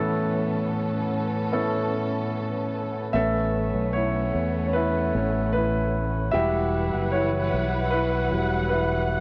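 In a straight 4/4 at 75 BPM, this hopeful, tender pop piece opens with an open, long-sustaining concert grand piano over lush, woody bowed strings with vibrato on Aadd9; at 3.1 s the piano takes a solo as a punchy, up-front fretless electric bass with analog chorus enters, and the harmony shifts to Emadd9 at 6.3 s, all set in a moderate scoring-stage reverb and a worn, warbly cassette-tape sound with drifting pitch and a dulled top end.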